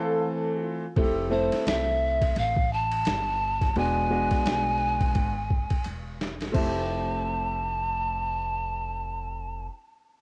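Recorded at home on cassette with light reverb and studio ambience, this cool, relaxed jazz-hop excerpt has a hazy, close-up sound. It opens on a brief break, where a bamboo pan flute carries the melody with a reedy, breathy tone, vibrato and a crisp chiff on each attack, and a very quiet, mellow trombone adds a second line with scooped notes. A brilliant upright piano holds up the accompaniment throughout, moving between Fmaj7 and E7. At 1.0 seconds a woody pizzicato upright bass and a gritty, compressed boom bap sampler-style kit enter, the kit built on a thumpy kick, medium-tuned snare, hi-hat, ride and crash on a lazy swung groove. After a drum fill the kit stops at 6.7 seconds, leaving the flute, piano and bass to carry the closing section back on Fmaj7.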